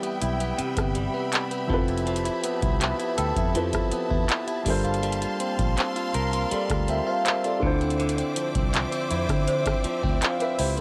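A booming analog drum machine drives this dreamy, tender contemporary R&B excerpt at 81 BPM in a straight 4/4, its deep kick, metallic hi-hat, handclaps and rim clicks sitting dry and up front. From the first moment a dark, mellow grand piano plays accompaniment while a lush studio string section holds sustained chords with close, focused vibrato, and a very quiet, slightly out-of-tune celesta adds delicate, bell-like texture. A clean, direct-recorded electric guitar picks bright, twangy arpeggios through an analog delay, compressed and scooped and placed forward in the mix. At 0.2 seconds a vintage muted fingered bass joins with a round, foam-muted, amped tone. The harmony moves from Cmaj7 through Fmaj9#11 and Gm11 to Dm9, all heard in a small room with a dry, gritty hardware sound.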